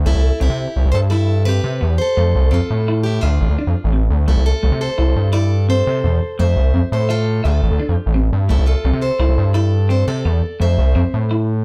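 A gritty, saturated synth bass sits up front in this sunny, danceable highlife guitar band excerpt, its sawtooth bite and oscillator-sync edge giving an aggressive, resonant push beneath the band from the first moment. The groove moves at 114 BPM in a straight 12/8, rooted in C major, cycling through C6, Fmaj7 and Dm7. Above the bass, a picked plugged-in steel-string acoustic guitar carries the melody with a warm concert sheen, finger squeaks audible along the way. A clean semi-hollow electric guitar fills in the accompaniment with a warm hollow-body tone, sitting lower in the mix. The three players sound like a band sharing one room, wrapped in a moderate studio reverb that lends a natural sense of space until the bass closes out at 11.6 seconds.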